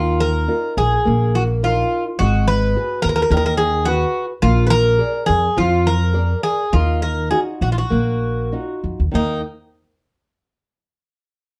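Dark studio production with a moderate reverb frames this mournful, passionate fado-style ballad, heard as a fragment of a longer piece. The pulse flows freely in rubato over a 4/4 metre. Up front, a Greek bouzouki carries the melody with a metallic, picked tone from its doubled strings, some of them ringing in octaves. Beneath it, a flamenco guitar fingerpicks a shadowy accompaniment, while a pizzicato upright bass sits forward too, woody and thumpy on its steel strings. The harmony moves from Ebsus2 through Abm7 and Bb7 to Ebmadd9, arriving on a bare Eb5 at 9.1 seconds, and all three instruments stop at 9.4 seconds.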